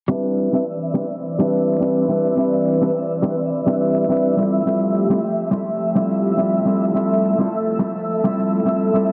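Drenched in a lush hall reverb and squeezed into a heavily compressed, muffled radio-like sound, this excerpt of smooth, blissful sunset chillout moves with a gentle swing from Cmaj9 to Fmaj9 at 4.4 seconds. A dark, clean electric guitar sits up front with digital delay, joined at 0.5 seconds by an airy, breathy pad of detuned chords colored by chorus and phaser. A very quiet overdriven electronic shaker ticks underneath, while a bright granular texture twinkles above from 0.6 seconds with an octave-up shimmer.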